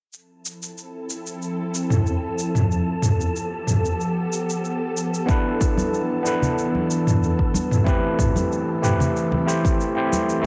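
Set in a moderate plate reverb, this wistful sunset chillout piece in A minor moves at 93 BPM in a straight 4/4, cut from a longer work, with overdriven electronic shaker and toms up front from the start beneath an ethereal, detuned pad of slow-attack sustained chords carrying ensemble chorus and vintage 12-bit sampler grit, while a dark, breathy wind-like noise texture hovers high above. At 5.3 s a bright, gritty tine electric piano through a combo amp arrives with tape echo alongside a deep, overdriven electronic kick, and close, hard-handed congas with a thin skin join soon after. The harmony drifts through Fmaj7, G9 and E7sus4 to Am7, and the kick drops out at 9.8 s as the other parts sustain to the end.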